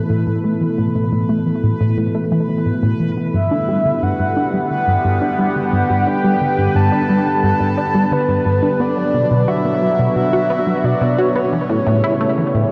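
Ambient, sequencer-driven space music with a mysterious, cosmic mood, where a tight, driving sawtooth sequenced riff with tape echo sits up front beside a sweeping, resonant pad holding sustained chords, a bubbling stepped-filter texture fades in from the background through its built-in reverb, and a breathy, flute-like lead with vibrato carries the melody from 3.3 seconds, all steeped in a huge, dark ambient reverb in this excerpt cut from a longer piece.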